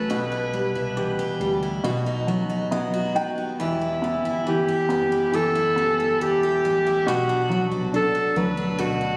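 A pop ballad in E minor at 69 BPM, this short excerpt carries a heartbroken, longing mood in a straight 4/4 pulse. A breathy alto saxophone takes the melody up front, mellow and roomy with a light vibrato, moving between E4 and B4 in a pop-style solo voice that still sounds slightly distant. Beneath it, a baby grand piano sits present and polished as accompaniment, adding a fill from 2.3 to 3.6 seconds. A picked steel-string dreadnought guitar plays full-bodied arpeggios with audible finger squeak and a touch of delay, while a deep sine sub bass with an octave holds sustained low notes in the background. The harmony moves from Em/B to B, then Em, settling on Bm at 7.1 seconds, all wrapped in a lush hall reverb with a phone-in-the-room character and compression.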